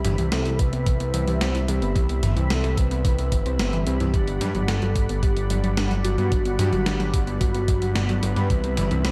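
A fat, saturated analog bass with sidechain pumping drives this nostalgic, romantic synthwave excerpt at 110 BPM in G major, joined by a thumpy electronic kick from 0.6 seconds, a gated 80s digital drum machine with gated-reverb snare, hi-hat and toms, airy supersaw chords drifting between Cmaj7 and Gmaj7, a warbly, lo-fi pluck arpeggio in the background, a round, dark octave-layered lead carrying the melody with chorus, tremolo and analog delay, and a barely audible riser at 8.9 seconds.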